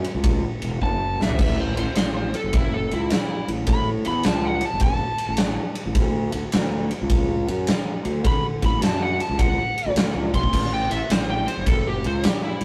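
Driving and gritty, this short cut from a longer piece is blues rock with a southern rock streak, rolling along at 105 BPM in 4/4 with a swung eighth-note feel. A big rock drum kit starts things at 0.0 seconds, its punchy kick, medium-tuned snare, toms, ride and bright crash cymbals sounding natural and up front in a big room, and a drum fill arrives between 0.8 and 1.4 seconds. A fuzz-laden, fingered electric bass enters almost at once, growly and overdriven as it holds down the low end from E1 to D3. From 0.8 seconds a dark, overdriven slide guitar takes the melody as a solo, ranging from E4 to C6 and trailed by analog delay. The harmony opens on a rootless D, moves to A at 1.4 seconds and returns to D before the chords drop away near the close. Light reverb, tube saturation and a rough rehearsal-room quality give the whole trio a raw, live-in-the-room character.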